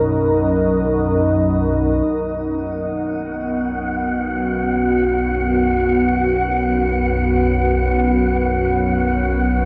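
A deep, moody sawtooth pad and a detuned, organ-like low drone open this ominous, desolate dark ambient fragment in free time, the pad's sustained chords shifting from D#m to B at 2.1 s while a breathy, wind-like tuned noise texture drifts in at 2.9 s, all of it bathed in a huge, wet reverb and the warbling pitch drift of worn cassette tape.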